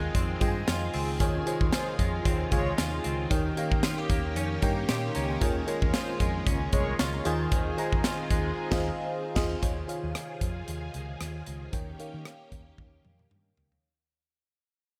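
A lush, dreamy FM electric piano with a soft pad layer opens this glossy, romantic slice of 1980s-style pop at 114 BPM in 4/4, with a light sixteenth-note swing, in E-flat mixolydian. It is joined from the start by shimmering, slow-attack string-machine violins holding sustained chords, a twangy, compressed clean guitar riff recorded direct with analog chorus and delay, and a dark, foam-muted fingered bass with a round tone. A polished, up-front studio drum kit with a punchy kick, high-tuned snare, rim clicks, hi-hat, tambourine, toms and crashes drives the groove, dotted by a metallic, very quiet cowbell. At 1.3 seconds, mellow, detuned synth brass stabs with ring modulation, a filter sweep and vibrato sit in the background. The guitar drops out at 9.1 seconds during a band accent, and from 9.6 seconds the piece fades out over a Dbmaj7/Eb to Eb7 change, closing with a drum fill. The whole piece sits in a small room with light reverb.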